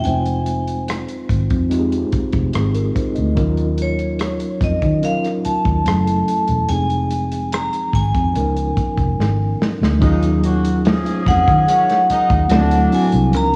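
Smooth and cinematic, this lush 1970s-style soul passage moves at an unhurried 72 BPM in a straight 4/4, cut from a longer piece and settling into Eb minor from 10.0 s. A ringing, metallic vibraphone struck with hard mallets carries the melody up front, its medium motor vibrato heard in a boxy small room, while a mellow, clean tine electric piano sounds through its built-in speakers beneath it. Anchoring the low end, a foam-muted fingered electric bass sits round and punchy, amped and dark, alongside a dry soul drum kit with a tight kick, medium-tuned snare, rim click and hi-hat and a rolled-off top. The harmony drifts through Fm7, Ebm9 and Db13 before a drum fill at 9.2 s ushers in a new section at 10.0 s, where a distant, roomy horn section with light vibrato adds pop-style stabs until 13.1 s over Ebm11 and D9. Light studio reverb and the character of a home cassette recording give the parts on tape a gently aged, intimate sheen.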